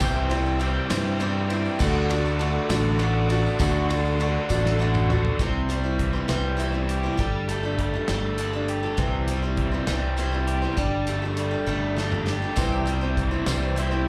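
Heard through a club PA at a live gig, this short cut from a longer folk-rock and heartland-rock piece has a dry, close sound with only a touch of club reverb. It moves at 67 BPM in a straight 6/8, with a jangly, open-road mood over chords of C, D and Gsus2. A round, up-front fingered electric bass anchors the bottom, while a boxy parlour steel-string acoustic guitar picks a sparkling accompaniment throughout. A raw garage guitar, double-tracked, overdriven and touched with slapback echo, drives a picked riff near the front. The natural country kit has a punchy kick, a medium-tuned snare and dark cymbals, with fills leading into the second section at 5.4 seconds and again before 12.6 seconds. A very quiet, reedy tonewheel organ with key click, chorus vibrato and rotary speaker holds sustained chords, and a jingly tambourine sits in the background; both drop out after the opening and return at 12.6 seconds.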